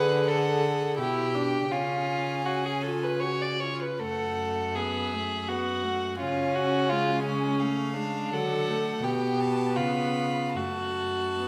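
A wet recital-hall reverb surrounds this elegiac, melancholic excerpt from a slow romantic string quartet movement, unfolding with rubato in triple metre. A rich first violin carries the melody softly in its upper range, quieter than a pure, floating second violin up front, while a warm viola with light vibrato and an intimate, airy bow fills the accompaniment and a clear, nasal cello holds the bass. All four players bow sul tasto with soft attacks, and the harmony passes through a C#7 before coming to rest on a minor chord at 10.6 seconds.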